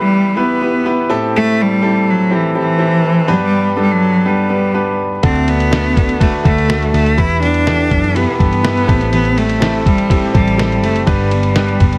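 A bowed solo cello with focused vibrato and a slightly boxy tone carries the melody up front in this uplifting, piano-driven pop piece, over a clear, natural grand piano moving through Em, Am7, G and D. At 5.2 s the band enters: a very quiet, full-bodied jumbo acoustic guitar plays a picked riff, a dark, round, foam-muted electric bass holds the low end, and a muffled, pitched-down sampler-style kit adds a thumpy kick, fat snare and ride cymbal. The whole mix sits in a large studio reverb with a heavily compressed, radio-ready sound.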